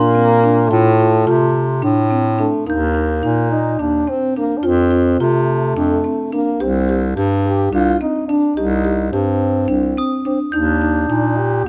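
Contemporary instrumental chamber music in a pensive, hypnotic 7/8 at 214 BPM in eighths, this excerpt has a warm, distant French horn with light vibrato singing the melody over mellow, woody marimba arpeggios and a clear, soft-attacked bass clarinet holding the bass line, while a bright, sparkling glockenspiel adds ringing texture from 0.0 to 3.6 seconds and returns at 10.0 seconds, all set in light reverb with close, detailed microphones as the harmony moves from Bb through Ebmaj7, F and Cm.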